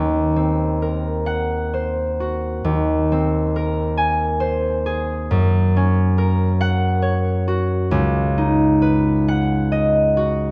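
A solo concert harp, fingerpicked and ringing, sits up front in this short classical passage cut from a longer piece. The mood is wistful and mysterious, moving in a slow, rubato 6/8 at roughly 43-47 beats per minute counted in dotted quarters. The harp spans from Db2 up to Ab5 in Eb dorian, tuned to A4 = 441 Hz. Its harmony drifts from Ebm6 through Bbsus2 over Eb and Gb, arriving on Db9sus4 at 7.9 seconds. A moderate concert hall reverb and a dark, warm production give the harp's tone a soft, enveloping glow through the full 10.5 seconds.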